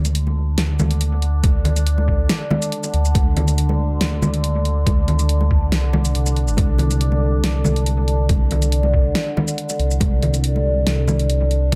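An echo-heavy mix with light reverb carries this brooding, dark deep dubstep fragment at 140 BPM in a half-time 4/4 feel on a Csus2 chord, where a rumbling, beating detuned saw bass sits up front from the start, a resonant drone with moving overtones sustains chords through chorus and its own reverb, a tape-colored house kit layers hi-hat, shaker and a fat snare, ringing close congas trail dub echo, and a gritty, pitched-down, compressed electronic kick enters at 1.4 seconds.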